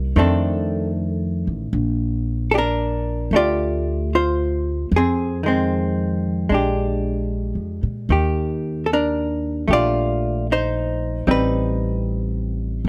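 Jazz ballad excerpt at 76 BPM with swung eighths, intimate and wistful, where a dark, clean, compressed hollow-body electric guitar comps picked chords such as F6, Bbmaj13 and Ebmaj9#11 over a woody, thumpy pizzicato upright bass on gut strings, both up front throughout in a dry, close and detailed recording.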